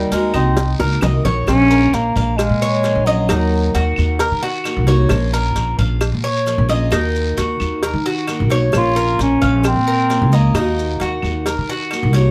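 A vintage-toned bass clarinet leads this nostalgic Cuban son and guajira in Bb minor at 132 BPM, opening with a short solo and returning at 8.8 seconds over a woody pizzicato upright bass, metallic double-strung tres arpeggios, a bright picked steel-string acoustic guitar with finger squeak, tight high-tuned cowbell and bongos, and background claves, raspy guiro and grainy maracas, all in light reverb.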